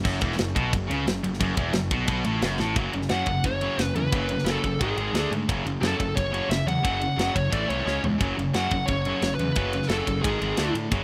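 Epic and heavy, this short heavy metal excerpt drives forward in a straight 4/4 feel, cut from a longer piece. A tight, up-front acoustic drum kit, its kick firm and compact and its snare medium-tuned, anchors everything, working across crash, ride, snare and toms, with fills at 2.6 seconds and again near 8 seconds. Two bright, picked guitars play the riff from the start, one overdriven and one high-gain, both set back in the mix, while a fuzzy, overdriven picked bass thickens the low end. A very quiet, double-tracked sludgy guitar adds weight only in the opening seconds before the harmony shifts from a minor chord to a run of power chords. At 3.1 seconds a dark, high-gain lead guitar steps to the front with a distorted melody coloured by tape echo, carrying the passage through to its close. The sound has the rough, small-room character of a home demo.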